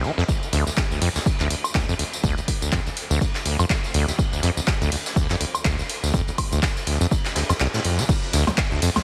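A driving, hypnotic acid house groove at 123 BPM in 4/4, with a 57% swing on the 16ths, pushes a squelchy, resonant sawtooth bass riff in D minor pentatonic, its chorus, delay and sidechain pumping giving the liquid line a filter-swept, smooth character up front. An up-front analog drum machine with a punchy snare, handclaps, hats, tambourine, woodblock and crash enters together with an electronic kick at 0.3 seconds, while a distant, dark-cymballed brush kit sits roomy and rolled-off in the background. The kick drops out from 7.6 to 8.1 seconds in this cut from a longer piece, all framed by light reverb and a heavily compressed, radio-like sound.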